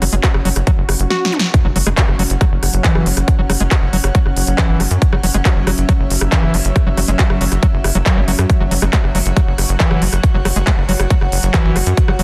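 A dense, heavily limited and dry mix carries this intense, driving psychedelic trance at 138 BPM, cut from a longer piece, with a punchy, overdriven electronic kick up front beside a tight, sawtooth-and-square sequencer bass that plucks and decays. A big-room dance kit adds crisp hats, handclaps, rim click and a punchy snare, while a squelchy, resonant acid bass riff with tape grit and dub echo sits in the background under an evolving, ring-modulated wavetable pad and an airy, breathy pad, both pumping to the kick. A very quiet swell, zap and impact span 0.8 to 3.3 s: the swell and a drum fill lead into the drop at 1.5 s, where the impact rings out until 3.3 s.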